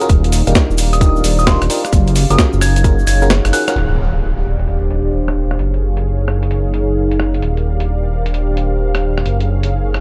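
A dark, detuned saw bass sits up front and rumbles deep in the low end of this bouncy, soulful two-step UK garage clip, which runs at 131 BPM in Eb major with a swung 16th feel. Over it, a crystalline synth bell carries the melody and a glassy FM electric piano adds stabs coloured by chorus, phaser and digital delay, both playing until 3.8 seconds, while a warbly, nostalgic tape-like pad hums underneath and pumps against the beat. A tight, overdriven electronic kick and a gritty, pitched-up breakbeat kit of crash, hi-hat, rim click and filtered snare drive the groove, with a grainy cabasa tucked in the background. The kick drops out for a drum fill and a band accent just before 3.8 seconds, where an electronic impact lands and a mellow analog pad enters with sustained chords as a filter sweep runs across the drums. The harmony moves between Ebmaj9 and Gbmaj9 throughout, set in light digital ambience with a dark, warm production.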